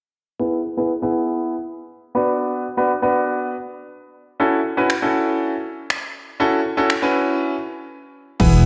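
Dance-pop with a confident, energetic feel, this short cut from a longer piece opens at 0.4 s on a brilliant baby grand piano playing accompaniment chords over E, Bm and F#m7. The piano sits up front with an intimate, polished tone and audible action noise, shaped by sidechain pumping and a low-pass filter sweep. A house drum kit arrives at 4.9 s with layered electronic hits of punchy kick, finger snaps and crash cymbal, overdriven and re-recorded in a large room. After a brief break, a dark, glossy chorused synth bass enters at 8.4 s on a low E, its retro pulse-wave and sawtooth tone evolving through pulse-width modulation, with a fast-attack filter pluck and its own sidechain pumping. A wet echo chamber reverb with a two-second decay gives the sound a spacious setting.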